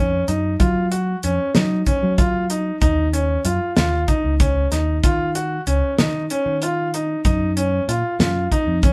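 A dry, damped 70s drum kit with a fat snare and punchy kick sits up front from 0.3 seconds, driving this intricate progressive instrumental in 7/8 at 190 BPM in Eb minor, while a bright, growly picked electric bass and a clear baby grand piano with long sustain playing arpeggios move from Gbmaj7(no3) to Eb7(no3) and back, all captured as a band playing live in a small room with moderate reverb.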